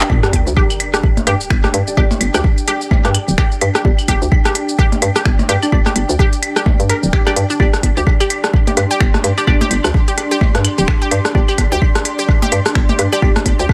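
A swung 4/4 groove at 128 BPM drives this cool, hypnotic minimal techno excerpt, with a deep, up-front kick, a clicky kit of finger snaps, handclaps, hi-hat and shaker, and layered claves, rim clicks and percussion blips carrying delay. The drop lands at 0.1 seconds on a G5 chord, marked by a background sub drop that runs until 2.0 seconds, while a hollow, bouncy FM bass and a juicy, squelchy resonant pluck riff with chorus and delay pump under sidechain. Behind them sit a muted, evolving dub chord stab with phaser and analog chorus, and an ethereal, airy pad with ensemble chorus and built-in reverb, all in a dry, close mix.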